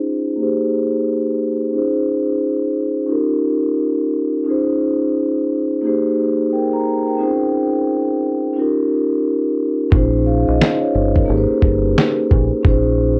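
Nostalgic and melancholic, this 88 BPM lo-fi hip hop fragment with a swung 4/4 feel opens on mellow, ringing soft-mallet vibraphone under a filter sweep, tracing jazzy chords like Abmaj9, Dbmaj9 and Eb9 before a round, dark fingered electric bass and a gritty, compressed sampler-style kit of thumpy kick, fat snare and finger snaps join at 9.9 seconds, the whole bathed in light reverb and the warbling pitch drift of worn cassette tape.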